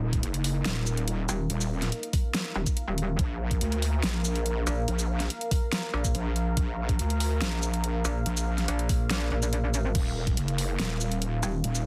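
A detuned, square-wave wobble bass and a deep, moody sawtooth pad open this heavy, chaotic half-time dubstep excerpt at 142 BPM in 4/4, tuned slightly low to A4 = 438 Hz. The pad sits low in the mix with a slow attack, long release, sub octave, chorus and its own reverb, and it pumps against the sidechain. An overdriven electronic kick with a knocking punch and a layered drum kit with a huge snare, crash cymbal, hi-hat and shaker sit up front with a touch of studio ambience. At 1.3 seconds a second, aggressive FM wobble bass with a metallic edge joins the first, both saturated, compressed and chorused. The harmony moves from Eb minor to Bb and returns to Eb minor, and the kick drops out briefly from 9.1 to 9.9 seconds. The whole fragment comes from a longer piece and has a dense, heavily limited modern master with light reverb and digital ambience.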